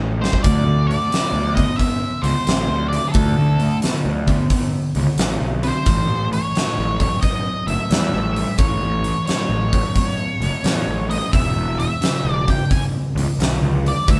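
A drum fill opens this swaggering, gritty blues rock and southern rock power-trio excerpt at 88 BPM with a swung feel in A mixolydian, as the growly, overdriven picked bass sits up front beside a double-tracked fuzz guitar riff set back in the mix. A dark octave-fuzz lead guitar carries the melody over a huge arena kit with a fat snare and punchy kick, while the chords move from D5 to A at 5.9 seconds and to E5 at 11.3 seconds. The band plays live in one room, with a moderate stone-room reverb around it.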